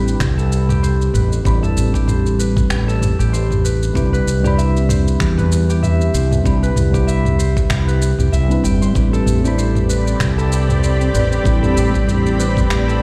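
Warm and smooth, this sunset chillout piece in A minor moves at 96 BPM with a gentle 16th-note swing, cycling from Am11 to Cmaj7 and back. A round, mellow FM electric piano treated with chorus, phaser and digital delay plays alongside ringing fingerpicked Celtic harp arpeggios, while a dark, punchy fretless bass sits up front in lush chorus over a knocking electronic kick and a tape-warm deep house kit of finger snaps, shaker and toms. At 9.7 seconds a shimmering, ethereal ambient pad drifts in with detuned, octave-up sustained chords, and the whole excerpt sounds as if played through a big sound system in a bare stone room.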